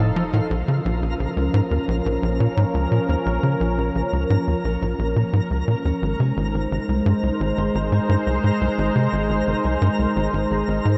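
Drenched in a huge ambient reverb and captured on cassette tape, this hypnotic, mysterious stretch of sequencer-driven space music rests on a punchy sawtooth sequencer bass riff with a plucky filter and delay, set up front beside a detuned, evolving pad whose sustained chords carry chorus and shimmer reverb. A deep, round sub bass sounds only for the first 0.5 seconds. Throughout, a very quiet fingerpicked Celtic harp rings out arpeggios beneath a sparkling granular texture with an octave-up shimmer, as the harmony moves from F7 to Bbm and reaches Ab at 6.0 seconds.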